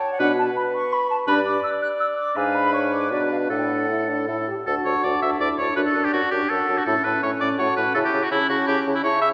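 In a rubato triple metre, this quick, cheerful and spirited classical-period movement for wind quintet, cut from a longer piece, sets an airy, tongued concert flute melody with expressive vibrato, heard at a distance, against a bright, up-front oboe second line with light vibrato, while a warm clarinet and a clear French horn supply accompaniment over a mellow bassoon bass, the harmony passing through a G#dim7 before settling onto D and A chords, the quintet heard in the wet reverb of a church or concert hall.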